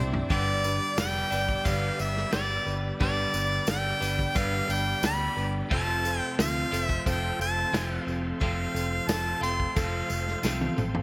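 A drum fill opens this jangly, nostalgic folk rock and heartland rock excerpt at 89 BPM in G mixolydian, where a clear, up-front harmonica melody with delay and scooped notes rides over a twangy twelve-string electric guitar riff, a boxy, woody plugged-in acoustic guitar with subtle chorus, a round fingered electric bass, a very quiet reedy tonewheel organ with fast rotary and key click, a jingly tambourine, and a muffled vintage drum kit in the background, moving from G to F at 5.7 s before another fill at 10.4 s, set in a bright 1980s-style digital production with light small-room reverb.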